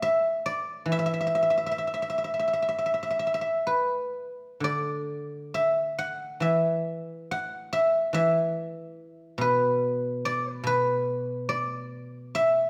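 Chinese traditional solo plucked-string music, elegant and pastoral, moves in a free rubato around 60-73 BPM as a fingerpicked guzheng rings out mellow and silvery up front across 12.7 seconds, shifting to a new section at 4.6 seconds within the moderate reverb of a recital hall, cut from a longer piece.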